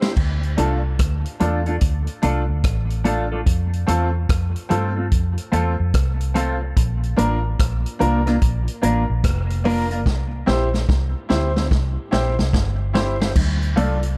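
A dark, round, foam-muted electric bass sits up front in this meditative, serious roots reggae excerpt, moving through a low register at 73 BPM in 4/4 with a swung sixteenth feel. Beside it, an acoustic vintage drum kit, also up front, brings a punchy kick, a medium-tuned snare, rim clicks, hi-hat, dusky cymbals and a crash, with a rolled-off top and a natural studio-room sound; a drum fill runs from 10.1 s. A mellow, clean, fingered electric guitar plays compressed accompaniment through phaser and tape echo, while a bright baby grand piano adds brilliant stabs with long sustain. The harmony in D minor moves from Dm to F, Bb and C before returning to Dm, and soft congas with a thick skin and high tuning slip in quietly in the background at 13.4 s. Light reverb gives the whole a gentle sense of space.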